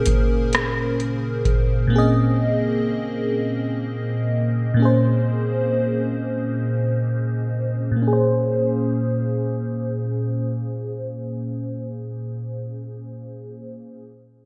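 Sultry and yearning, this slow six-eight R&B fragment in Bb minor moves at roughly 34-43 BPM in dotted quarters, opening on a lush Bbm9 chord. An FM electric piano layered with a soft pad carries the accompaniment throughout, its detuned, dreamy tone sitting up front with a fast attack, a decaying tail and a noise layer, colored by chorus and phaser. A booming analog drum machine appears only briefly, from 0.1 to 1.7 s, with a deep kick, metallic hats and rim clicks, its gated reverb and large-room character giving it a cavernous punch. A filter sweep runs across the opening stretch while the tempo slows, and a new section arrives at 8.0 s. The bright, 1980s-style digital production is bathed in a moderate plate reverb and softened by a low-pass filter, lending the whole a hazy, nocturnal glow.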